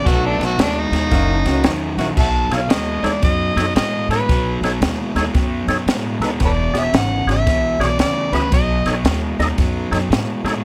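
An electric blues shuffle with a laid-back, soulful mood, cut from a longer piece and carried by a swung eighth-note feel. An amplified, gritty harmonica takes the lead in a jazz style, opening with a solo that runs to 2.2 seconds and peppered with tongue slaps and scooped notes as it rides over the band. Beneath it, a bright, crunchy overdriven guitar sits up front with a picked riff, while a woody pizzicato upright bass and a compact cocktail drum kit, dry with dark cymbals, a high-tuned snare and a punchy kick, hold down the groove. A clear, close-miked horn section punches in with octave-doubled stabs only in the opening seconds, and a percussive tonewheel organ enters at 2.5 seconds, its key click and third harmonic percussion colored by slow rotary speaker, light overdrive and chorus vibrato. The harmony moves through B7 and F#7 before settling into the second section, which shifts to E7 and returns to B7, all wrapped in a light reverb.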